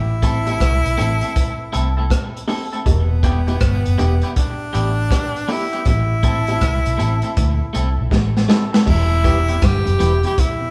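Roots reggae at a steady 80 BPM in 4/4 with a swung sixteenth feel, this short excerpt in E minor carries a serious, meditative mood as it moves between A minor and E minor chords. A bright, close-miked tenor saxophone with vibrato carries the melody in a pop style, sitting over a dark, foam-muted fingered electric bass that sounds round and punchy. A crunchy breakbeat drum kit sits up front, gritty and saturated with dark cymbals, a tight kick, rim clicks and a rolled-off top, while a clean, twangy picked electric guitar adds accompaniment through a dub echo and low-tuned bongos played with soft hands sit in the background. After a drum fill from 8.1 to 8.9 seconds, the music shifts at 8.9 seconds as a slightly broken-up electric guitar enters with a low riff, also fed through dub echo. A mellow tonewheel organ with key click joins at 9.1 seconds, turning through a slow rotary speaker behind the band, and the whole performance sits in a moderate stone room reverb that gives it the feel of a group playing live together.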